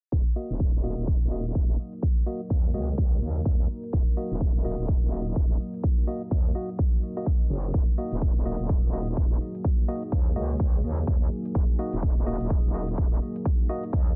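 A dense, heavily limited mix with little reverb and a low-pass filter frames this aggressive, bouncy bass house excerpt in Eb minor at 126 BPM, swung at 60% on the sixteenths and sitting on a single Ebm chord. An overdriven, punchy kick sits up front over a very quiet electronic hi-hat, while a metallic, saturated wobble bass pumps against it from 0.1 seconds. A hollow, percussive organ stab with chorus and digital delay carries a filter sweep throughout, and from 1.8 seconds a deep, moody pad with detuned sawtooth unison and built-in reverb holds sustained chords underneath.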